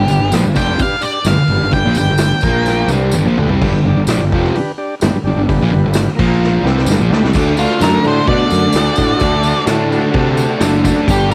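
A dark, octave-fuzz lead guitar opens this raw, rowdy garage rock excerpt with a solo melody, drops out at 2.9 seconds and returns at 7.6 seconds, riding over a bright, double-tracked fuzz guitar riff and a growly fuzz bass at 129 BPM in a straight 4/4. A vintage drum kit with a punchy kick and rolled-off top adds fills, a jingly tambourine sits close and dry, and a reedy, overdriven combo organ holds sustained chords with light vibrato in the background. The chords move between G and Bb5 before landing on D, with a small-room home-recording ambience and a cassette-tape grain on the lead and drums.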